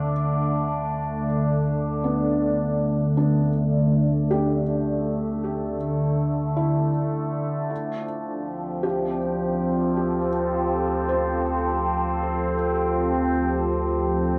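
This slow ambient piece opens on a single Dmadd9 chord in D dorian, with an evolving wavetable pad holding sustained chords up front, its detuned, warbling tone dark and morphing through a phaser and its own reverb. Beneath it, a felt-muted upright piano plays soft, intimate arpeggios, its mellow sound colored by cassette tape and tape echo. A round analog bass fades in on a deep, wave-folded D2 over the full 14.4 seconds, sitting low in the mix. At 53 BPM in a straight 3/4, the mood is melancholic and reflective. The home cassette recording places the parts in a wet booth ambience, and the passage is cut from a longer piece.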